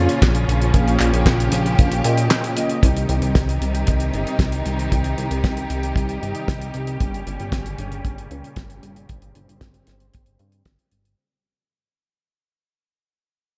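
A dark, warm studio sound with light reverb frames this nostalgic, danceable italo disco excerpt at 115 BPM in straight 4/4, where a dry, tight kick and a damped 70s kit with fat snare, hi-hat and handclaps sit in small room ambience beneath a glossy, saturated chorused synth bass, round detuned synth brass stabs that stop at 7.0 s, and clear bowed string chords that take a filter sweep through the fade-out from 2.8 s, moving from Bbm to Cm after a short break and on to Gdim.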